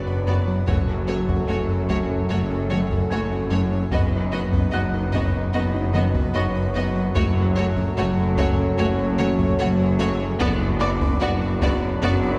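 Heard from further back in a wet concert hall, this vast, relentless hybrid orchestral and electronic film cue sets a rich, lush violin melody over a smooth background violin line and a very quiet viola section, with cellos and clear, distant double basses holding the bass beside a deep analog bass riff, while bright trombones, mellow French horns and a warbling vintage pad sustain chords, a tine-like synth pluck with chorus plays arpeggios, a felt-muted upright piano with digital delay adds intimate texture, and a taiko ensemble struck with hard sticks enters at 0.7 s.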